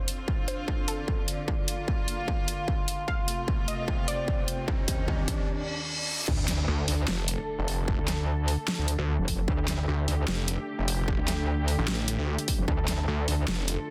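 Menacing and chaotic, this heavy wobble dubstep cut from a longer piece runs at 150 BPM in a half-time feel in D phrygian, opening with a lush detuned unison pluck melody carrying tape echo over dark, bowed chamber strings pumping under a low-pass filter and a nostalgic, warbling lo-fi pad in the background, while an electronic riser, a reverse cymbal and a sub drop build alongside a drum fill and an up-front dubstep kit with a huge snare, bright hats and a distorted electronic kick, until the drop at 6.3 s unleashes a metallic, chorused FM wobble bass joined at 6.7 s by a snarling, growling overdriven saw bass, all within a dense, heavily limited modern master with light reverb.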